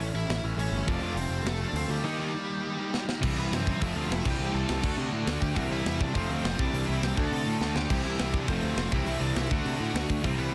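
In straight 4/4, this rowdy, energetic punk rock fragment opens in half time before surging forward at 3.2 s, with drum fills at 2.9 and 7.6 s. A gritty, saturated drum kit with a tight kick and rolled-off top sits up front beside a growly, fuzz-laden picked electric bass, while a bright high-gain lead guitar carries the melody through distortion and digital delay. Behind them, a double-tracked sludgy guitar riffs from the start, and a crunchy overdriven guitar and a tight distorted guitar join at 0.9 s, all packed into a dense, heavily limited, nearly dry mix.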